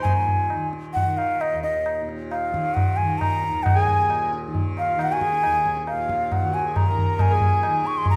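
An airy bamboo bansuri carries a tongued, vibrato-laden melody up front over a softly plucked, buzzing tanpura drone in this solemn, introspective Hindustani excerpt in raga bhimpalasi on Eb, set at 135 BPM in 4/4 and gradually speeding up. Low-tuned, ringing tabla enters almost at once, close and present, while a reedy, nasal hand-pumped harmonium sounds only briefly at the start before returning at 3.8 seconds with a breathing second line. The bansuri's unsteady tone and the shimmering tanpura sit in a moderate scoring-stage reverb.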